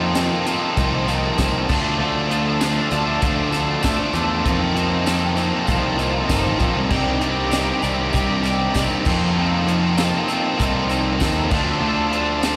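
Indie rock at 98 BPM with a moody, cool air, where a bright, crunchy overdriven guitar riff up front with analog chorus and delay rides over a twangy, slightly broken-up second guitar in the background, a fuzzy, overdriven picked bass sits up front, a very quiet jingly tambourine enters at 0.1 seconds, and a compact cocktail kit with a punchy kick, high-tuned snare and dark cymbals joins at 0.2 seconds, all moving through F7sus4, Dm and Cmadd9 in what sounds like a live gig heard through the venue's PA, cut from a longer piece.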